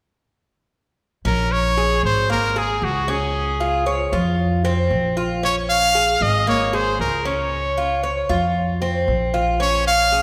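A straight 4/4 Cuban son and guajira groove, danceable and warm, sets picked, metallic Cuban tres arpeggios on double strings against a woody, thumpy, dark pizzicato upright bass from 1.2 s, while a brilliant, punchy, forceful trumpet solo with vibrato leads from 1.3 s, all three up front in the wet reverb of a church or concert hall in this passage cut from a longer piece.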